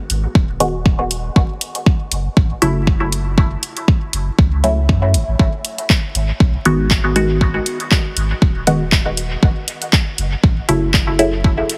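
A deep, layered electronic kick drum sits up front from 0.4 seconds, anchoring this hypnotic dub techno cut at 119 BPM in 4/4, with a 55% swing on the sixteenths. Around it, a deep house kit of handclaps and dark hi-hats rings through studio reverb and dub echo. A pure sine sub bass, smooth, clean and sustained with a fast attack, pumps against the sidechain from D#1 to F#2. The filtered chord stab enters at 0.6 seconds, a muted yet bright sawtooth-and-square sound, detuned and plucked by its filter, swirling through phaser, cassette tape colour, dub echo and its own sidechain pumping. The harmony moves from G#5 to F#m, then G#m7 and F#m7, over a light digital ambience, while the heavily compressed, radio-like mix carries a layer of vinyl crackle.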